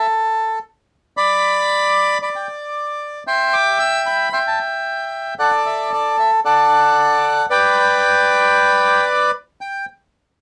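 A reedy, airy bandoneon plays solo and up front in this elegant, nostalgic tango fragment at 114 BPM in 4/4 with a rubato feel, moving from Em at 3.3 seconds through D and Bm in a dark production with light reverb, cut from a longer piece and running to 9.9 seconds.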